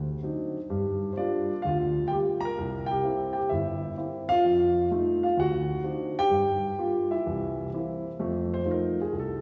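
The recording has a wet, resonant concert-hall sound, with a long reverb tail and a small-room ambience that carries the piano into a church-like space. This short excerpt from a longer piece is solo jazz in a swung 4/4, playful and warm in mood. A grand piano, the only instrument, sits up front with an intimate, natural tone, and the noise of its action is audible under the notes. It ranges from G1 to Bb5 and moves through a turnaround of D7b9, Gm7, C7 and F7 chords that circles back on itself. At 8.2 seconds the harmony lands on F7 as a new section opens, and the piano carries on alone to the end at 9.4 seconds.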